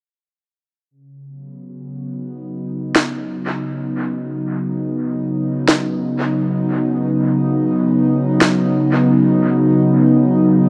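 An airy, breathy synth pad fades in at 1.3 seconds, holding a detuned, mellow Badd9 chord with a noise layer, ring modulation and chorus, setting a deep, meditative ambient dub mood in free time. At 3.0 seconds a woody electronic snare drum joins up front, its hits trailed by dub echo until it stops at 8.6 seconds, while the pad sustains to the close of this fragment of a longer piece. A moderate plate reverb and an echo-heavy mix give the sound a spacious, drifting depth.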